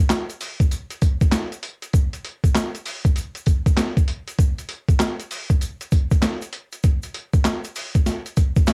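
A gritty, compressed boom bap drum kit sits up front with a thumpy kick, medium-tuned snare, handclaps, hi-hat and tambourine, carrying cassette-tape grit and a small-room sound through this slick, punchy R&B excerpt with a swung 16th feel, while a grainy, bright tube shaker rattles in the background under light reverb.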